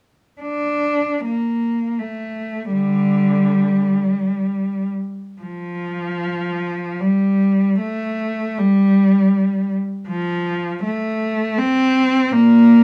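Lonely and yearning, this short excerpt from a longer classical work features an unaccompanied cello played by one player, bowed with vibrato in a smooth, even, rich tone up front from Bb2 to D4, moving freely in 3/4 with expressive rubato between roughly 48 and 84 BPM, set in moderate studio reverb, with a new section beginning at 5.4 seconds.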